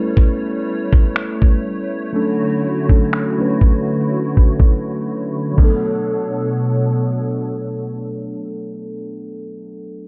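A dark, low-passed production with a small room's modest reverb frames this late-night, longing contemporary R&B fragment, where muted, intimate felt-like synth keys with chorus sit up front over a hollow, flute-like pad of slow-blooming sustained chords as a filter sweep runs through the opening and a gritty, compressed soul sampler-style kit of thumpy kick, finger snaps and crash plays a fill from 5.1 seconds before dropping out at 5.8 seconds, leaving keys and pad to carry the swung groove through the A7, Dmaj7 and Bm7 harmony.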